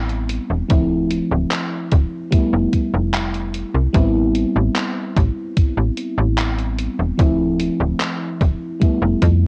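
A mellow FM electric piano sits up front, its soft, round, dark tone blurred by analog chorus, analog delay and cassette tape, with a faint noise layer under each fast-attack, decaying note. This hazy, nostalgic vaporwave excerpt from a longer piece moves at a straight 74 BPM in 4/4, in A minor and tuned slightly flat to A4 = 437 Hz. The piano drifts through lush extended chords, Am9, Dm9 and Fmaj9#11, while a slap-like FM bass adds a snappy, metallic, digital bite in the low register. A gated 80s digital drum machine supplies handclaps and hi-hat, sampler-style and tape-softened, with big gated reverb that suggests a large room. From 0.7 s a thumpy electronic kick drum joins up front, the loudest part of the mix, and the whole thing carries the light reverb and lo-fi character of a home recording on cassette.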